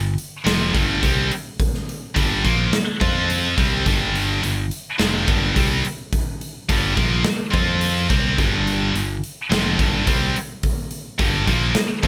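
Hard rock in G minor at 106 BPM, this menacing, aggressive fragment of a longer piece puts a scooped, double-tracked high-gain guitar riff up front, distorted and moving from Gm to F5 and back, over a growly, bright picked electric bass, while a big acoustic rock kit with a punchy kick, medium-tuned snare and hi-hat joins at 0.2 s, the band sounding as if it plays live in one room with light reverb.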